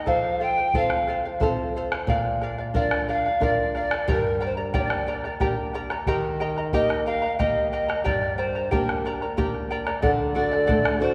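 A steady 3/4 pulse at 90 BPM, straight in feel, carries this short cut from a longer Andean folk piece in G minor, tuned to A4 = 438 Hz, its mood both melancholic and festive. A pure, wooden-toned pan flute sings the melody with vibrato and tongued notes, set at a distance, while an up-front charango adds shimmering fingerpicked double strings, some doubled at the octave. Beneath them a flamenco guitar, fingerpicked on fresh strings with audible finger squeak, fills out the lower harmony, and an up-front bombo gives a deep, dark, vintage, band-limited thump. The chords move from F through Bb, G minor and Eb back to G minor before landing on D at 10.0 seconds. There a breathy, hollow large quena with a soft attack joins in the background as a second line. A wet concert hall reverb with a 2.4-second decay bathes the ensemble in a spacious glow.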